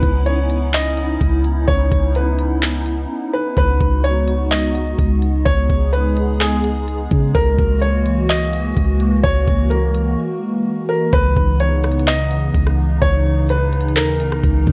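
A felt-muted upright piano carries the melody, its thin, intimate, short-sustained tone sitting inside a hazy, spacious cloud-rap haze in C# dorian at 127 BPM, felt in half-time. Beneath it a hollow, flute-like pad holds sustained chords with ensemble chorus and a sidechain pumping, its detuned, vintage character warbling under the melody. A soft 808-style bass gives round, dark, decaying low notes placed up front, while a smooth R&B drum kit supplies a knocking kick, smooth hi-hats, handclaps and rim clicks. The drums drop out briefly from 3.1 to 3.6 seconds, and a break arrives at 10.2 seconds before the final section begins at 11.1 seconds, returning to the opening C#m9 chord. The whole mix carries light reverb and a worn cassette quality with warbly pitch drift, and the passage is cut from a longer piece.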